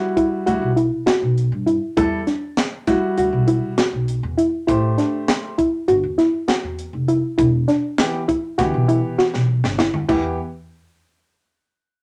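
Progressive instrumental band music in E minor, this driving, tense excerpt moves in 9/8 at 200 BPM counted in eighths, with a straight feel. A soft, round synth pluck with a dark edge and a touch of chorus carries the arpeggios up front, sitting in a narrow range from D4 to F#4. Alongside it, a boxy baby grand piano supplies the accompaniment, while a woody pizzicato upright bass with steel strings anchors the low end from E1 to G2. A crisp fusion drum kit with a high-tuned snare, punchy kick, hi-hat, toms and crash cymbal sounds airy and polished, and it plays a fill from 9.2 to 10.1 seconds. The harmony moves from Emadd9 to Am7 at 4.7 seconds and settles on Em at 7.4 seconds, all set in a moderate studio reverb.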